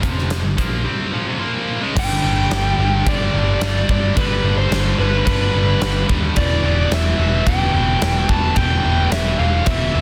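This anthemic, energetic hard rock passage, cut from a longer piece, opens with a cranked stack guitar and a scooped, high-gain guitar playing riffs in the background, supported by a growly, overdriven picked bass and a huge arena drum kit. The kit sits up front in a pumping hall sound, with a punchy kick and a medium-tuned snare, both softly clipped, alongside bright crash and hi-hat cymbals. At 2.0 seconds a bluesy lead guitar enters with a dark, distorted tone and digital delay, carrying the melody high above the band. A very quiet, double-tracked electric guitar joins at the same moment with another riff beneath. The harmony moves from a G power chord to G major, then shifts to E minor at 6.4 seconds, all within a dense, heavily limited modern master with little reverb.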